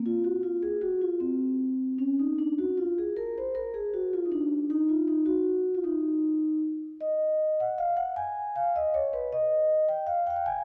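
A lone vibraphone, played with soft mallets and its motor off, carries this brief, bittersweet musette cut from a longer piece. Its tone is mellow and ringing, with a metallic sheen that sits forward in the midrange as it moves between C4 and Ab5. The waltz-like 3/4 metre runs at 156 BPM but is played rubato, giving the line a loose, nostalgic sway. The harmony begins in Eb dorian and darkens to Eb minor at 7.0 s, where a new section carries the fragment through to its close at 10.6 s. The instrument, tuned to A4 = 438 Hz, is heard from further back in a recital hall whose wet 1.6-second reverb lets each note bloom and linger.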